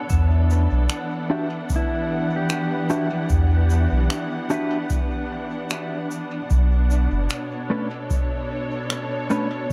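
Muted, veiled strings and a clean pedal steel guitar with dub echo open this hazy, meditative ambient dub excerpt at 75 BPM, joined at once by a round, up-front sub bass, a deep tape-warm electronic kick and dark, smooth shaker and finger snaps, while a dark, clean electric guitar adds echoing stabs from 1.3 seconds in an echo-heavy mix that moves from Em9 to Bm9.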